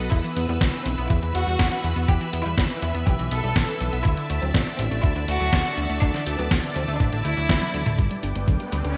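Danceable and nostalgic, this italo disco excerpt moves at 122 BPM in a straight 4/4, set in E minor and moving from Em to Dsus2 before landing on G at 8.0 seconds. A fat, detuned sawtooth analog bass sits up front with saturated thickness, while a thumpy, gritty electronic kick and a compressed sampler-style drum kit of congas, hi-hat, snare and toms drive the groove, the kit's fat snare standing forward with gated reverb and high-pass filtering on its hats, snare, toms and percussion. A lush vintage string machine holds sustained chords throughout, its slow attack and ensemble chorus carrying a touch of 12-bit sampler grit, as a rich chamber violin section plays a smooth, vibrato-laden melody through digital delay. In the background, a round, bright analog pluck runs arpeggios colored by ring modulation, a filter sweep, chorus and delay, and a very quiet, dark synth brass adds brief stabs. 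A drum fill arrives at 7.5 seconds and a background riser enters at 8.5 seconds, all set in a lush hall ambience with a bright 1980s-style digital sheen.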